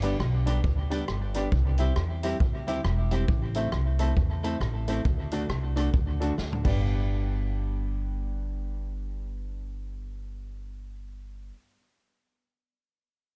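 A woody, pizzicato upright bass sits up front in this cheerful, bouncy ska clip with a swung feel, alongside a swinging big-band drum kit with a boomy kick, a rolled-off top and rim clicks, whose fill at 6.4 seconds ends its part at 6.7 seconds. A bright, twangy clean electric guitar carries the accompaniment while a worn, slightly detuned upright piano adds stabs through tube saturation, both touched with tape echo, over a G, C, Am, D progression. The production is warm and dry, though the kit itself sounds distant and roomy.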